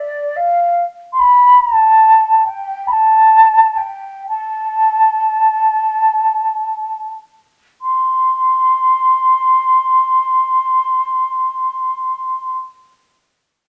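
Haunting and mournful, this short Celtic folk excerpt in A minor drifts in a rubato 6/8 at roughly 29-49 BPM, easing into a slower pace from 1.6 to 7.8 seconds. A lone mellow wooden flute carries the whole passage in its upper register, its airy, woody tone shaped by gentle vibrato and soft attacks. It sits up front yet sounds distant, framed by a moderate large-studio reverb, with a second phrase arriving at 7.8 seconds.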